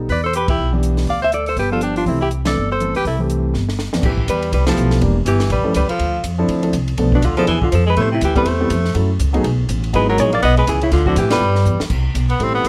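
A fast, swinging 4/4 groove with swung eighths drives this relaxed small-group piece in the swing and bop style, cut from a longer performance. The upright bass sits up front, plucked with a woody steel-string tone, while a compact cocktail kit keeps time on ride, hi-hat, snare, kick and crash, its cymbals dark, its snare tuned high and its kick punchy in a dry sound. A clean, dark-toned hollow-body electric guitar carries the picked melody, and a bright tenor saxophone with vibrato and a soft attack plays a second line alongside it, while a warm, natural grand piano fills in the accompaniment. The harmony moves through rich extended chords, with band accents punctuating the phrases, drum fills at 3.5 seconds and 11.7 seconds, and a settle on C6 at 11.9 seconds. Close, detailed microphones and light reverb give the band an intimate, present sound.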